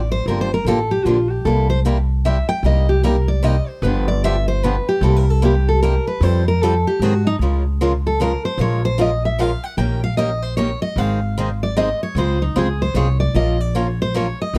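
Upright bass and a picked steel-string guitar melody open this swinging, charming acoustic string swing excerpt at 151 BPM in 3/4, with a second, boxy guitar joining on accompaniment at 0.3 s and the piece settling into Db major from 7.4 s, the thumpy, woody bass and the bright, fresh-stringed lead sitting up front in a dark production with light reverb.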